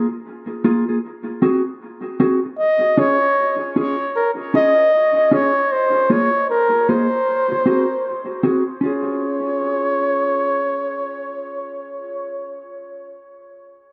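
Swung sixteenths at 77 BPM in 4/4 carry this spacious, heavy reggae passage, cut from a longer piece and tuned to A4 = 442 Hz. A dark, clean, compressed electric guitar plays alone over Fmadd11/Bb and Ab7 until the flugelhorn enters at 2.6 seconds, a mellow solo voice with light vibrato and a classical poise, moving through Dbadd9, Bbm9 and Ab7 before settling on Db. Both parts sit up front, each trailed by dub echo, in an echo-heavy mix bathed in wet spring reverb and studio ambience.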